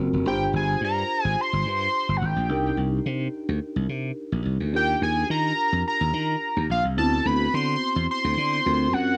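Polished 1980s jazz-funk pop sets an urban, nocturnal mood at 107 BPM in 4/4, with a light swing on the sixteenths and a home in C minor, tuned a touch flat of standard pitch. A bright, growly slap bass sits punchy and up front from the start, carrying the low end with a direct, amped edge. Beside it, a worn tine electric piano comps in a clean, warm middle register, slightly out of tune and colored by subtle chorus and cassette-tape grit. At 0.3 seconds a fat analog lead enters high above, a sawtooth-and-triangle blend with a sub octave, fast attack, filter sweep and sustained notes shaded by vibrato, also softened by cassette tape. The harmony moves through G7sus4, Cm7, Ebmaj9 and D13 before landing on a tense D7alt, all inside a short, moderate booth ambience on a home cassette recording, and this fragment of a longer piece breaks off at 9.2 seconds.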